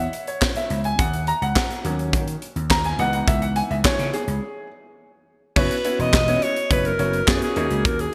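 Bright, eighties-style digital production bathes this short slice of late-night boogie funk in a lush hall reverb, moving at 105 BPM in C# dorian over C#m7, D#m7 and F#7sus4 chords. An up-front grand piano, intimate with audible action noise and a subtle chorus, carries a solo from the start over growly, amped slap bass and a punchy drum kit with a high-tuned snare, handclaps and gated reverb, with a break at 4.4 seconds. At 5.6 seconds a breathy, close-miked alto saxophone enters with whispered subtone, vibrato and scooped notes for a slick, jazzy turn.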